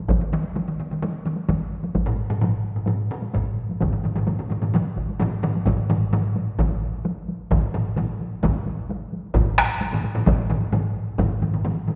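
Bathed in a wet concert-hall reverb, this powerful, driving cut from a longer Japanese traditional taiko drum ensemble piece moves at 130 BPM in straight 4/4 with four taiko ensemble parts: a heavy-stick group, close and dry, sitting in the background; a vintage, band-limited hard-stick group up front; a close, dry hard-stick group also up front; and a heavy-stick group, close, dry and forward, that joins at 2.1 s. The music moves into a new section at 5.7 s, and the dry hard-stick group drops out at 11.3 s.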